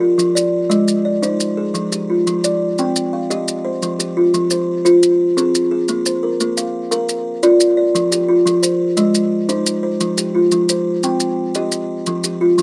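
Trance-like and hypnotic, this southern African traditional piece turns on an mbira-style interlocking cycle in F dorian, moving at 116 BPM in a straight 12/8. A buzzing kalimba leads with plucked arpeggios from F3 to G5, its woody, hollow-box tone and thumbnail attack ringing out up front with a slapback echo. Maracas join at 0.2 s, adding a grainy, mellow shake that sits close and forward at a lower level. A short opening passage gives way at 3.8 s to a longer second section, with the harmony moving from Fm to Bb and then into open F5 shapes that alternate with Ab and Cm. Recorded outdoors with little reverb, the sound stays dry and immediate, and the cut from a longer piece ends on a chordless moment at 12.1 s.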